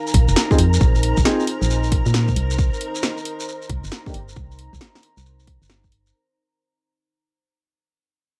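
A silky string machine and a warbling ambient pad open this moody, skippy two-step UK garage excerpt at 135 BPM, both pumping under sidechain over Bb9sus4 and Cm7 chords, while a hollow, organ-like FM bass with a filter sweep, a punchy tape-warm kick, an up-front analog drum machine's hi-hat and snare, and a grainy shekere drive the swung groove, and a dark, boxy grand piano plays low-passed stabs with tape echo from 0.5 to 4.1 seconds, all under vinyl crackle and a fade-out.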